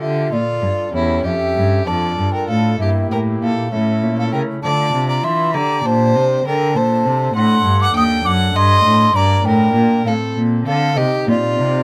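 A steady, straight 6/8 pulse at 66 BPM, counted in dotted quarters, carries this solemn, introspective baroque-style sonata movement in D minor, tuned to A4 = 439 Hz. Cut from a longer piece, it has four parts that play together throughout its 11.8 seconds. The baroque flute takes the melody with an airy, woody, mellow straight tone and tongued notes. A single bowed violin sings a focused second line with vibrato and a smooth top. Beneath them, a single bowed cello gives the bass a rich, expressive sound with soft attacks, vibrato and portamento, while a pipe organ on foundation stops fills in a thick accompaniment with romantic voicing. The harmony moves from Dm through A7/E, Gm and D7 to Bbmaj9/A, reaching Cm at 11.0 s, captured with close, detailed microphones and light reverb.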